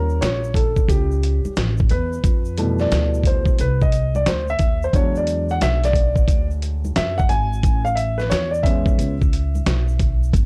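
A swung sixteenth-note groove in 4/4 from a compressed, sampler-style soul drum kit with a thumpy kick and medium-tuned snare drives this smooth, cool jazz-hop excerpt, as a dark, mellow concert grand with audible action noise takes a solo over a rootless D#9, then Fmaj9#11, E9 and Amaj7. Up front, a woody gut-string upright bass plays pizzicato through transformer saturation, while ringing tube shaker and congas sit in the background, all carrying the dry, gritty character of a small-room cassette recording.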